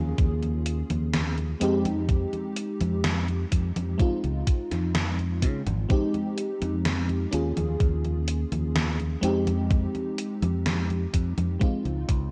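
Vaporwave at a slow 63 BPM in F minor, this melancholic, hazy excerpt cut from a longer piece sets a lush, detuned FM electric piano with soft pad layer, shimmering with tremolo, chorus and delay, over a fingered electric bass and a thumpy, gritty electronic kick, with a gated 80s drum machine adding congas, hi-hat and gated-reverb snare, all wrapped in cassette-tape ambience as chords like Eb9sus4, Fm9 and Dbmaj9 drift by before a fade-out from 11.0 seconds.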